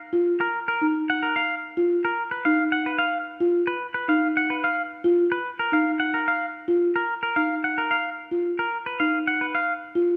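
A buzzing marimba with soft mallets opens at 0.1 s, its woody, round, airy arpeggios sitting up front, and at 0.4 s a twangy, clean, compressed electric guitar joins with the melody in this propulsive, bright minimalist classical pattern music at 110 BPM in 3/4 and B lydian, cut from a longer piece and bathed in a wet scoring-stage reverb.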